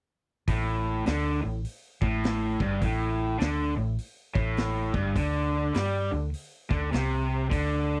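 Heavy and gritty, this short cut from a longer blues rock and southern rock power-trio piece moves at 102 BPM in 4/4 with a swung eighth-note feel, its harmony sitting on Gsus2 before shifting to Csus2 at 5.2 seconds. A bright, double-tracked overdriven guitar drives the riff up front, while a dark, round, foam-muted fingered bass holds the low end and a saturated vintage kit of hi-hat, punchy kick and medium-tuned snare, its top rolled off, keeps time from 0.5 seconds. The sound is dry and close, with the feel of a 1970s studio recording.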